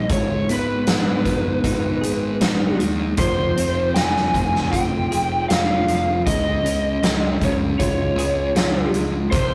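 Dark and cathartic, this 9.5-second cut from a longer quiet-loud alternative rock piece moves at a straight 78 BPM in 4/4, passing through Abm, Fm and Db. A lead guitar through a small cranked amp carries the melody between Cb5 and Ab5, its picked, overdriven tone dark and lo-fi. Underneath, a clean electric guitar plays bright, twangy, compressed arpeggios with tremolo, spanning Ab2 to Ab4. A fuzz picked electric bass holds the low end from F1 to Eb2 with a warm, overdriven growl. The huge arena drum kit enters at 0.1 seconds and sits up front, its punchy kick, medium-tuned snare and hi-hat sounding natural in a big room. Light reverb and warm saturation give the whole a rough rehearsal-room feel.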